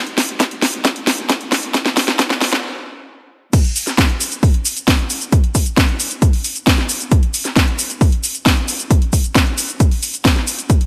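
A house drum kit opens this bittersweet, emotional trance excerpt with an overdriven fill of cracking snare, bright hi-hats, shaker and crash cymbal, soon joined by a punchy, up-front electronic kick with its own overdrive and high-pass filtering, as the build-up breaks into a stop at 2.6 seconds before the drop lands at 3.5 seconds in a light, digital ambience.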